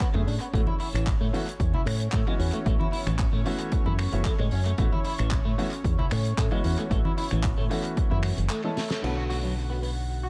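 Nu-disco with a sleek, sensual groove, cut from a longer piece, where an up-front envelope-filtered fingered bass and a punchy, overdriven electronic kick sit alongside a damped 70s kit with a fat snare, snaps, claps and hi-hat, low-tuned congas in the background, a polished baby grand piano, a slightly broken-up picked guitar riff soaked in lush chorus and tape echo, and a thick, warbling detuned pad pumping behind Bm9 and A69 chords, all in a dry, echo-heavy mix that breaks at 8.5 seconds for a drum fill and band accent before a new section begins at 9.0 seconds.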